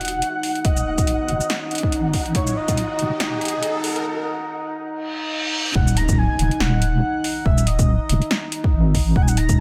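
The rhythm sits in a half-time 4/4 at 141 BPM, with a swung sixteenth feel driving this brooding, cavernous deep dubstep cut in Eb minor. An overdriven house-style kit of metallic hats, shaker and punchy snare runs throughout. A deep, overdriven electronic kick enters at 0.6 seconds, drops away at 2.8 seconds and returns for the drop at 5.8 seconds. Underneath, an up-front wobbling bass with a triangle and sine tone holds the low end, and a moody, detuned ambient pad sustains an Eb minor chord with chorus and its own reverb. A breathy, flute-like lead with vibrato floats a melody through chorus and dub echo, and a grainy, flickering texture lingers in the background until 4.1 seconds. The opening build-up carries a filter sweep, a riser, a short break and a reverse cymbal, and an electronic impact lands with the drop in this passage cut from a longer piece.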